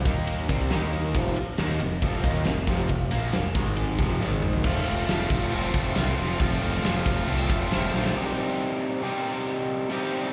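Classic rock at 137 BPM in a straight 4/4, gritty and swaggering, this live excerpt heard through a venue PA sets an up-front, double-tracked, overdriven semi-hollow guitar riff with slapback echo over power chords from Eb5 to Ab5 before landing on F and then Cm, backed by a growling, overdriven picked electric bass and a huge arena drum kit with a punchy kick, medium-tuned snare and bright cymbals that throws in fills at 4.2 and 7.9 seconds, before bass and drums stop at 8.1 seconds and leave the guitar alone in the recital hall reverb.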